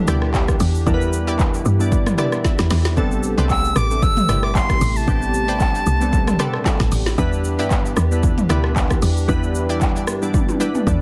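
A swung sixteenth-note amapiano groove drives this deep, hypnotic excerpt: an up-front deep house kit with punchy kick, woody snare, dark hi-hats, handclaps, rim clicks, shaker and toms sits over a percussive, decaying log drum bass, with a couple of drum fills along the way. Glassy, airy digital keys with chorus carry the Em7 to Am11 harmony, while a hollow, flute-like pad hums in the background and a round, warbling vintage analog pluck adds chorused stabs trailed by digital delay. From 3.5 to 6.9 seconds, a bright, reedy concert flute takes the melody up front, its pure tone colored by vibrato, all in a dense, heavily limited mix with light reverb.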